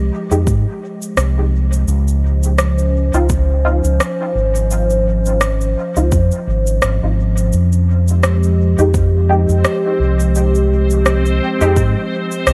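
Hazy and meditative, this ambient dub fragment rests on a warbling, nostalgic pad holding Fm9 and Dbmaj9 chords with chorus and built-in reverb, while a dark, round fingered electric bass sits up front. Muted, detuned dub chord stabs pass through ensemble chorus, cassette tape and dub echo. A tape-warm electronic cabasa and rim click carry dub echo over a deep, overdriven electronic kick with studio reverb and a light swing, and at 8.3 seconds a reversed, granular swelling texture enters, bright and dreamy in its own reverb.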